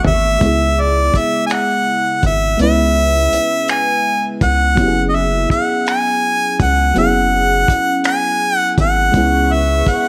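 A muffled, cloth-damped drum fill opens this sultry, late-night slow six-eight R&B excerpt at 55 BPM, where a clear, close-miked harmonica with light vibrato carries the melody over a lush FM electric piano with a dreamy pad layer and chorus, a rubbery, hollow square-wave bass, a gritty kit with finger snaps, hi-hat, kick and toms, and very quiet bowed strings that appear only briefly at the start and return at 9.1 seconds, all in a small room with light reverb as the harmony moves from C#m7 to F#9sus4 and back.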